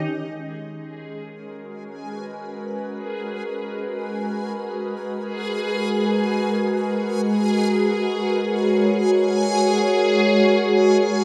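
Reflective and serene, this ambient passage drifts in free time around G# minor, tuned to A4 = 442 Hz, and is taken from a longer piece. A glassy, ethereal FM pad sits up front from 0.0 to 11.2 seconds, holding sustained chords between G#3 and C#5 with a slow attack, long release, ensemble chorus and its own reverb. Above it, a reversed, swelling texture built from detuned triangle tones adds a dreamy, granular shimmer between G#4 and G#5, with a soft attack, long release and bright edge. Both parts fade in across the whole span while resting on a single G#m9 chord. A lush scoring-stage reverb with a 1.9-second decay surrounds them, giving the fragment a spacious, suspended quality.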